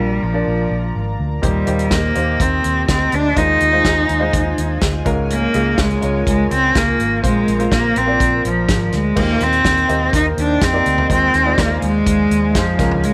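A rich, bowed solo cello with vibrato and a smooth top carries the melody up front in this uplifting, hopeful piano-driven pop excerpt, over a warm baby grand piano with short sustain, a shimmering, retro chorused pulse-width pad in the background, a dark, round foam-muted electric bass, and a natural small-room country drum kit with a punchy kick that enters at 1.4 seconds, all in light reverb.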